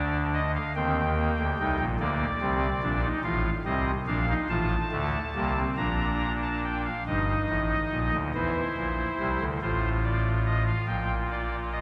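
A pipe organ on a soft reed oboe stop, voiced in baroque fashion with tremulant and set up front, carries this serious, driving three-part fugue alone, ranging from deep pedal tones to high treble in a straight 6/8. Cut from a longer piece, the passage moves through a first section and into a second at 7.1 seconds, its harmony turning from E-flat toward C7 and closing on G minor over B-flat. A wet church reverb with a long tail places the listener further back in the room.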